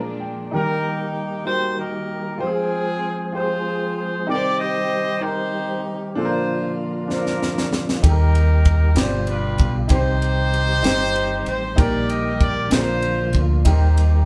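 Slow gospel in a straight 6/8 with a hopeful, jubilant mood, opening on a brief woody piano fill over a dark, lush touch of bowed strings before a warm, vibrato-laden horn section takes up the melody at 0.5 seconds. A clear tonewheel organ with key click, light overdrive, chorus vibrato and a slow rotary speaker sustains chords beneath the natural-sounding upright piano accompaniment. After a drum fill at 7.1 seconds, a crisp, airy fusion kit with a high-tuned snare, tight kick and ride cymbal joins up front, followed at 8.0 seconds by a round, dark dub bass, all captured as a band playing live in one room with moderate reverb.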